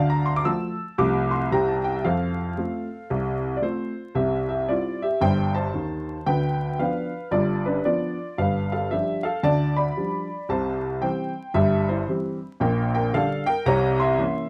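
A woody, slightly detuned upright piano plays alone and up front in this swinging, playful stride jazz fragment at 114 BPM with a loping swing feel, starting in F major and moving to C major at 4.2 s, its sound set in a dark production with a moderate studio reverb and a bed of vinyl crackle.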